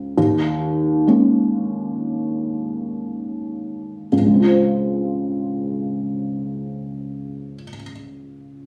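A felt-muted upright piano, intimate and boxy with short sustain and audible action noise, plays a tender, hopeful classical accompaniment in Db major at a rubato 54-69 BPM in 4/4. It slows down through the opening phrase, which rests on an Eb7sus4 harmony, then settles onto Dbmaj7 at 4.1 seconds for the second phrase of this brief fragment from a longer piece. Captured on a phone in the room, the up-front sound carries light reverb, studio reverb and compression.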